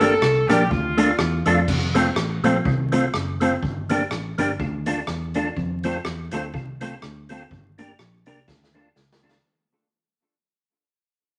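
A warm, up-front horn section states the melody for only the first 1.4 seconds of this bouncy, upbeat ska excerpt in F major at 124 BPM with a light swing, leaving a dark, clean hollow-body jazz guitar with tape echo, a lightly overdriven tonewheel organ stabbing through chorus vibrato and a fast rotary speaker, a round, foam-muted fingered bass and an airy street-band drum kit with a boomy kick to carry on through a fade-out that begins at 1.7 seconds, while crackling vinyl and a wet studio reverb colour the mix and a drum fill arrives at 8.5 seconds.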